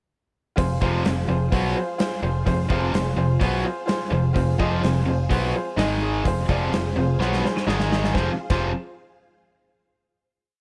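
A straight, driving rock beat from a punchy, gated 80s drum kit sits up front, with bright cymbals and a drum fill at 7.2 seconds leading into a final chord at 8.1 seconds, ending this short, gritty classic rock piece. Two picked electric guitars, one cranked and overdriven further back and one tight and distorted, play a power-chord riff, doubled by a syncopated, direct-amped bass. A brilliant, woody, slightly detuned upright piano pushes eighth-note chords with audible action noise, while a very quiet, lush vintage string machine with phaser and ensemble chorus holds sustained chords in a small room.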